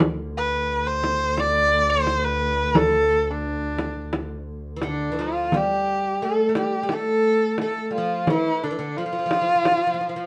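Turkish makam ensemble music in D makam huseyni, moving at a steady 87 BPM in a straight 4/4, with a soulful, longing mood in this short passage cut from a longer piece. A bowed double bass, warm and distant, holds a low D drone from the start until about 5.6 seconds, its single player shading the note with vibrato and portamento. A small, bright frame drum sits close and dry up front, played with soft hands until 9.8 seconds. Carrying the melody between D4 and D5, a rich, focused kamancheh enters at 0.4 seconds, its lone bowed voice up front and full of vibrato and sliding portamento. At 4.8 seconds a fretless oud adds a second line in its lower register, its plectrum-plucked double strings sounding woody and acoustic. A moderate studio reverb gives the ensemble some air, and a faint mains hum lingers beneath.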